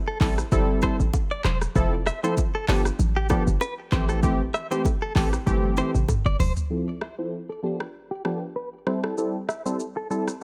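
A close, dry-sounding cut from a longer afrobeats piece in A minor at 97 BPM with a lightly swung sixteenth feel, hypnotic and mellow, where an electronic afro-pop kit with deep kick, crisp hats, handclaps, rim click, shaker and toms sits up front beside round, detuned sawtooth analog keys with chorus and a filter sweep, a punchy sine 808-style bass with a noise layer, and very quiet hard-handed bongos and congas, while a bright, twangy clean electric guitar recorded direct plays a compressed, picked riff through tremolo, low-pass filtering and digital delay, and after a drum fill from 5.5 seconds the bass and hand percussion drop out around 6.6 seconds, leaving guitar, keys and drums over the Fmaj7, G7 and Am7 changes.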